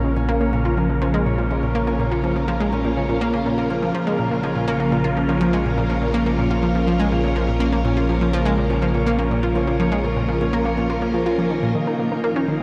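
Mysterious and expansive, this fragment of sequencer-driven space music moves in a straight 4/4 pulse, bathed in a huge, wet reverb and a dark production. A bright, up-front analog pluck carries the riff with a round, detuned sawtooth tone, its fast-attack notes decaying through chorus and analog delay. Beside it, a phased string machine holds sustained chords, its vintage sawtooth voice swirling and warbling through ensemble chorus and phaser. A fingerpicked concert harp rings out acoustic arpeggios softened by a low-pass filter and analog delay, while a deep, mellow sine sub bass with tube saturation anchors the low end. In the background, a breathy, wind-like noise texture sustains a single airy pitch until 11.8 s, when the harmony shifts from Bbm to Ebsus2.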